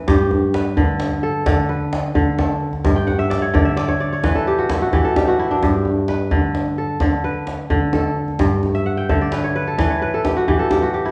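A fingerpicked kora opens the recording with ringing, crisp arpeggios that sit up front, and a deep, warm djembe joins almost at once, struck with hard hands and carrying a live-room feel. This is joyful, hypnotic West African traditional music in a rolling 12/8, built from a short cycle that settles on G, then on bare fifths, before briefly dropping its harmonic footing. The kora ranges from low G2 up to G5, and it breaks into fills from 3.0 seconds and again from 8.7 seconds, near the end of each half. The piece turns to a second section at 5.6 seconds that repeats the same chord cycle. Both instruments are bathed in the lush reverb of a church or concert hall, lending the acoustic sound a resonant, spacious glow. The clip is cut from a longer piece.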